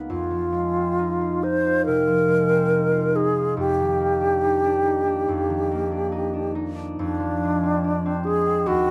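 Dreamy and pastoral, this short cut from a longer classical piece is an impressionist duo for alto flute and harp, moving at a rubato 70 BPM in 4/4. The concert harp supplies the accompaniment, its fingerpicked acoustic strings ringing through a low-to-middle range with a warm body. Entering at 0.1 seconds, the alto flute carries the melody from D4 to C5, airy and bright with expressive vibrato, a soft attack and lifted highs. Both instruments sit up front, with the flute leading the blend over the harp in a light reverb. The harmony drifts from Fm7 to D#maj7/E# at 3.6 seconds and settles on Fm6 at 7.0 seconds.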